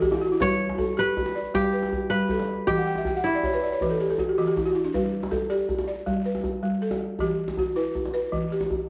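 West African traditional music for strings, xylophone and drum, this short excerpt cut from a longer piece moves at 106 BPM in a straight 12/8, joyful and flowing in G lydian, with the harmony shifting between G and Em. A fingerpicked kora carries the melody up front with a crisp, ringing acoustic tone, playing from the start until 4.8 seconds. Beside it, a balafon struck with rubber mallets spins arpeggios across a broad range, its woody, dry sound edged with buzzing, and it adds fills near the opening and again from 2.8 to 4.9 seconds. A medium-tuned djembe played with hard hands sits distant in a large room, its metal rattles adding shimmer beneath the other two parts. The kora and balafon share the grainy character of cassette tape, and a moderate spring reverb colours this homespun home recording.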